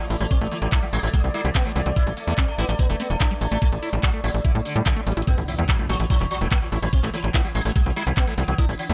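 Psychedelic and intense, this psychedelic trance excerpt drives along at 145 BPM in A minor, with the tuning set slightly sharp at A4 = 443 Hz. A bright, buzzing sitar carries the melody throughout, its shimmering sympathetic strings colored by phaser, digital delay and sidechain pumping. Up front sit a knocking electronic kick and a tight, nasal sequencer bass built from sawtooth and square waves with a punchy filter pluck. A drum and bass kit with bright hats and handclaps adds electronic detail, while a squelchy, resonant acid bass riff with phaser and delay pulses in the background. For the first 5.3 seconds a very quiet bubbling texture of random filter steps and a warbling, nostalgic lo-fi pad with chorus and reverb hover underneath, until a drum fill at 5.1 seconds leads into the drop, where a very quiet electronic impact lands and the mix stays dry and close.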